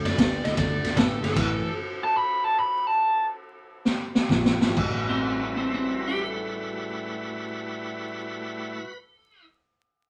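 A swung 4/4 shuffle drives this laid-back, rollicking electric blues clip, cut from a longer piece; it slows after the opening bars, and a drum fill at 3.8 s carries it into a new section. The raw garage drum kit sits up front with a boomy kick, a high-tuned snare, and crash and ride cymbals, all heard as a saturated, rolled-off sound from a small room. Early on, a lead guitar through a small cranked amp plays a dark, overdriven, picked melody. Beneath it, a slightly broken-up, compressed rhythm guitar riff and a round, punchy, foam-muted bass come and go, while a bright, shouting tonewheel organ turns through a slow rotary speaker. The chords move from D9 to A13, and at 5.1 s a clean lap steel enters with a fingerpicked slide line over that A13, all wrapped in light reverb and vinyl crackle.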